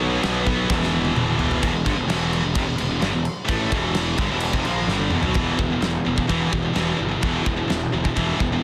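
Heavy and dark, this short heavy metal excerpt drives in a straight 4/4 feel, cut from a longer piece. Three picked electric guitars carry the riff together from the start: a bright, high-gain guitar sits on top, while a tight distorted guitar and a double-tracked, overdriven semi-hollow guitar with a warm hollow-body tone fill in further back. Underneath, a growly, punchy fuzz bass anchors the low end with an overdriven snarl. A big acoustic rock kit enters at 0.2 seconds, up front with a punchy kick, a fat snare, toms, crash and china cymbals, its sound dark and smooth in a big room. Drum fills at 0.7 and 4.9 seconds push the music from a power-chord opening into an E minor passage and then back to an E5 power chord, all set in a dense, heavily limited modern master with little reverb.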